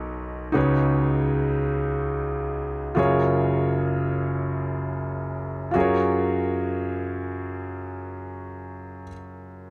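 A solo grand piano, clear and up front, carries this short gospel fragment in a straight 6/8 with a jubilant, uplifting mood. The instrument sounds intimate and natural, with the soft noise of its action audible beneath the notes, and it ranges from deep bass notes up into the upper middle register. A light reverb gives the piano a modest sense of space. The opening passage moves from a Bmaj7 to a C#9sus4 and then settles onto an F#maj9 at 3.0 seconds, with the pace easing from 0.6 until 5.8 seconds. A second, brief passage follows from 5.8 to 8.8 seconds before the piano plays on to the cut at 9.7 seconds.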